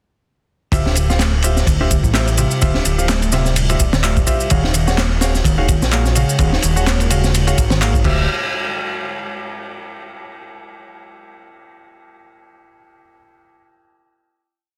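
A dense, heavily limited modern mix with light reverb opens this short, raw and funky breakbeat piece, which drops in at 0.7 seconds and runs to a final hit at 8.3 seconds. Up front, a crunchy looped breakbeat with edits hits with a punchy kick, a high-tuned snare and dark, rolled-off ride and crash cymbals, its saturated grit set against an overdriven machine layer of electronic shaker and handclaps that sounds re-recorded in a large room. A fat analog bass, thick with detuned sawtooth and square waves, plays long gliding notes through a filter sweep, while a bright, growly picked electric bass repeats a 32-step riff. A clear concert grand piano drops short, close-voiced stabs in a dotted rhythm, trailed by dub echo, over a Dm11 to Ebm11 change. In the background, a moody, warbling vintage pad enters at 1.4 seconds with slow-attack sustained chords, soaked in chorus and reverb and pumping against the sidechain.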